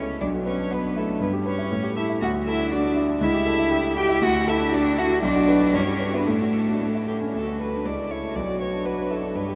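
A quick, cheerful and spirited classical-period movement for piano trio in D major at 119 BPM in a rubato 2/4, where a single bowed violin carries the melody with a rich, focused, smooth-topped tone and vibrato, a lone bowed cello sings an even, clear second line, and an up-front concert grand with natural deep bass supplies the accompaniment, all three playing throughout this brief cut from a longer piece and bathed in a huge, wet reverb that places them in a vast, echoing space.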